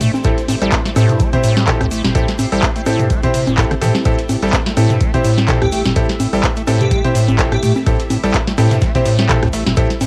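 A squelchy, resonant square-wave acid bass riff pumps over a round sine sub bass, a booming, up-front analog drum machine with crisp snare, metallic hats, claps, congas, rim clicks and toms, a very quiet gritty breakbeat kit, a faint grainy egg shaker and a hushed, lush string machine holding an Am7 chord, joined at 0.2 s by a deep electronic kick and bright grand piano stabs through tape echo, while an airy, dreamy detuned lead with chorus, vibrato and portamento floats in on G4 from 5.6 to 7.7 s in this trippy, raw acid house excerpt caught dry on a home cassette recording.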